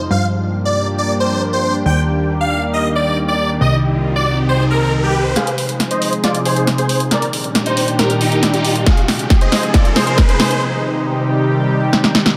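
A lush, slow-attack unison pad with chorus and a plucky, funky sawtooth bass open this driving, bittersweet uplifting trance excerpt beneath a huge, detuned supersaw lead with sidechain pumping, low-pass filtering and analog delay, while a riser builds in the background, a punchy, tape-warm analog drum machine with hi-hat and snare enters at 5.4 seconds as the bass drops out and a filter sweep on the supersaw drives the build-up, and a layered electronic kick sits up front from 8.9 seconds before a break at 10.6 seconds, in a dreamy mix soaked in plate reverb.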